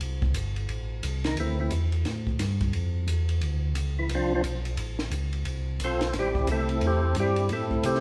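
A fat, percussive tonewheel organ carries the melody, with third-harmonic percussion on its attack, a brief phrase at 1.3 seconds and then a longer solo line from 4.0 seconds. Beneath it a round, mellow tonewheel organ plays the bass with chorus vibrato, both organs lightly overdriven through a slow rotary speaker and sitting up front, while a compact cocktail kit adds a dry, high-tuned snare, punchy kick and dark cymbals in a swung 4/4. This smoky, bluesy soul jazz organ trio plays live together in a large studio over Am7 and Dm7, with a moderate reverb, in a short cut from a longer piece.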